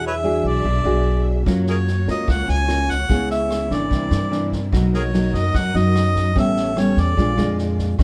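A straight 4/4 bossa nova groove at 147 BPM sets a smooth, melancholic mood in this brief cut from a longer piece, with thumb-plucked nylon-string guitar and a woody, growly pizzicato upright bass up front from the start, while a vintage drum kit with punchy kick, rim click and a rolled-off top enters at 1.5 seconds. A mellow harmonica carries the melody with tongue slaps and scooped notes, sounding distant and roomy, as a lush bowed string section with vibrato holds sustained chords in the background. Light reverb colours the sound as the harmony moves through rich chords such as E9, F#maj7, C#m7 and Bmaj7.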